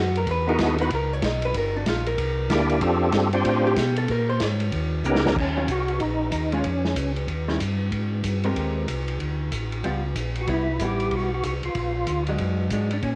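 A clean, compressed hollow-body jazz guitar opens with a solo lasting until 5.4 seconds, over a mellow, round tonewheel organ carrying the bass line, a muffled, lo-fi drum kit with dark cymbals and a punchy kick, and a fat, lightly overdriven percussive organ melody that enters at 0.5 seconds with key click and slow rotary shimmer. A drum fill leads into the second section, where the jazzy chords continue and the melody organ drops out at 7.1 seconds, then returns at 10.4 seconds. This smoky, late-night soul jazz organ trio swings at 188 BPM, with cassette tape coloring the guitar, drums and lead organ and a light studio reverb giving it a homemade feel.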